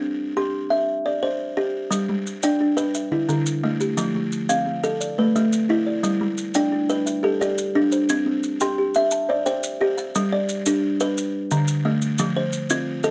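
Southern African traditional music in a hypnotic mbira-style interlocking cycle in 12/8, cut from a longer piece, is led up front by a bright, buzzing kalimba with a woody, solid-board tone, joined at 1.9 seconds by grainy, close and dry maracas and at 2.1 seconds by a second, hollow-boxed kalimba sitting lower in the mix until 10.5 seconds, captured through close, detailed microphones with light reverb.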